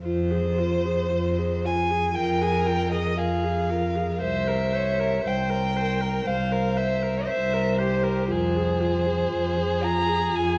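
A dark, woody first violin sings a yearning, elegiac melody with vibrato over a close, sul tasto viola accompaniment with an airy bow and an intimate, soft-attacked cello bass, while a smooth-topped second violin line joins at 2.2 s in this rubato excerpt from a slow romantic string quartet movement, heard in a reverberant recital hall.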